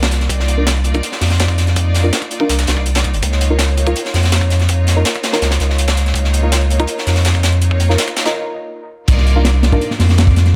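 A dark, frenetic drum and bass excerpt in a jungle vein at 164 BPM, in C phrygian, opens with everything sounding at once: a thick, saturated sub bass sits up front beneath a crunchy breakbeat kit whose tight kick, medium-tuned snare, dark cymbals and rolled-off top give it a gritty, mid-forward punch. Behind it, a compressed sampler-style kit adds a high-tuned snare and hi-hats in the background, while a distant, lush string section holds bowed chords with vibrato, roughened by vintage 12-bit sampler grit and a low-pass filter. A soft, nasal chord stab with a fast attack and short decay flickers through chorus and dub echo, its filter sweeping throughout the build-up from 0.0 to 9.1 seconds as the harmony moves from Cm11 to Db69. A brief break arrives at 8.3 seconds, and at 9.1 seconds the track drops back onto Cm11. Light reverb and a small room ambience frame the mix.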